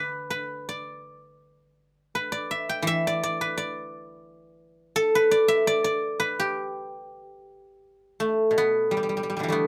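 A solo guzheng, played with fingerpicks, rings out bright and silvery at the front of this short Chinese traditional excerpt, ranging from B2 up to G5 in a flowing, elegant mood. The pulse sits around 84 BPM in 2/4 but moves with uneven, rubato timing, and the music shifts into a new section at 7.1 seconds before the cut at 9.7 seconds. Close, detailed microphones capture the instrument in a moderate studio reverb.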